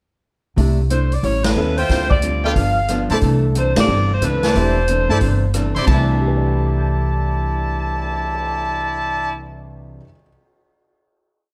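With light reverb on the whole mix, this short, joyful big band swing piece in C major moves at 181 BPM: a thumpy, woody upright bass sits up front playing a two-feel line, while a distant, roomy drum kit keeps time on the hi-hat with a boomy kick, rim clicks, ride, crash and a cymbal swell. A mellow, vintage saxophone section with vibrato and plate reverb carries call phrases in four-part block voicing, brilliant trumpets add syncopated stabs in drop-2 voicings, and the band hits accents at 1.4 and 3.7 seconds. An intimate grand piano with audible action noise comps in rootless voicings, and a dark, clean hollow-body archtop guitar strums jazz chord shapes beneath until the band settles on a held final chord from 5.9 seconds.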